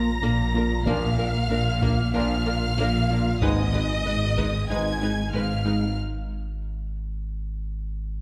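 This cinematic excerpt of a hybrid orchestral and electronic film score opens at once on a bowed violin melody high in the register, joined by a second, more distant violin line an octave below, while a glassy, crystalline wavetable pluck spins arpeggios through chorus and tape echo. Underneath, a smooth sawtooth-and-triangle synth bass riff, a clean, dark sine sub bass, and rich, even cello and double bass sections build a deep low end, with soft-attack violas adding vibrato and portamento in the background. At 0.9 seconds a French horn section and a vintage-toned trombone section join with sustained chords, and a very quiet taiko ensemble played with heavy sticks enters beneath them. Set at 94 BPM in a straight 4/4, the harmony moves from Bb to Ab minor at 3.4 seconds, giving the relentless, futuristic mood a darkening shift. Most parts fall away by 6.0 seconds, leaving the sine sub bass sustaining alone through the break until 8.2 seconds, all placed in a moderate scoring-stage reverb.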